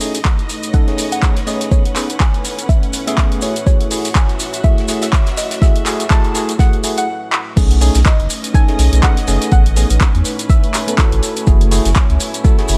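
A hypnotic, late-night deep house excerpt at 123 BPM in F# dorian, with a swung sixteenth feel, a deep electronic kick up front from 0.3 s, and a dark, chorused ambient pad and lush, biting symphonic strings pumping in the background beneath bell-like tine electric piano stabs. A soft, round pluck melody with chorus and tape echo carries a filter sweep through the build-up, while a punchy analog drum machine with handclaps, hi-hat and crash, grainy maracas and a very quiet, dry 70s kit with a fat snare fill out the groove over B13, Amaj9 and F#m9 chords. After a brief stop and a drum fill at 7.3 s, the drop arrives at 7.6 s as a round, tube-saturated sub bass enters, and the pluck falls away at 11.2 s.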